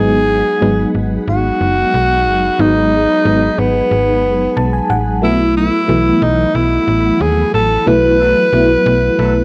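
Pop with an urgent, nostalgic mood, this short cut sets a gritty, up-front alto saxophone melody over a phaser-tinged FM electric piano with tremolo that plays a fill at 4.2 s, a very quiet, mellow string-machine cello pad, and a snappy, metallic slap-like FM bass, before a dark, distant horn section adds punchy stabs at 8.2 s during a band accent, captured as a cassette home recording in a small room.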